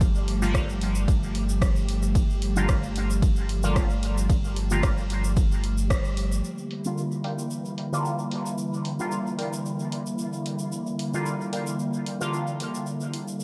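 Dub techno in G dorian at 112 BPM, this nocturnal, cavernous excerpt rides a gently swung 4/4 groove under light reverb. A punchy, up-front electronic kick and a deep, round sub bass anchor the opening, both dropping out after about 6 seconds, while a deep house kit of dark, filtered hats, ride and rim clicks, bathed in dub echo, carries on alongside a grainy tube shaker. An airy, breathy pad holds sustained chords throughout, pumping against the sidechain with chorus, and a wind-like tuned noise texture sits dark in the background behind it. A juicy, resonant polysynth fires detuned stabs through phaser, chorus, cassette tape coloring and dub echo, and from 6.4 seconds filter sweeps move across both the polysynth and the pad as the harmony shifts from G7(no3) to Gm7. In this second section, at 7.2 seconds, a crisp, warbling wavetable chord stab adds a high, decaying riff that trails off into echo.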